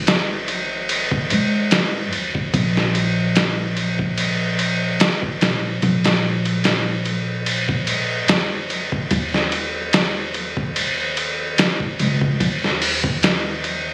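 Caught on a phone in a room, with club reverb, vinyl crackle and compression, this dark, smoky trip hop fragment with a lightly swung sixteenth-note feel pairs an up-front, muffled, pitched-down sampler-style drum kit of thumpy kick, medium-tuned snare, hi-hat and ride with a woody pizzicato upright bass on steel strings that sounds from 0.0 to 13.9 seconds.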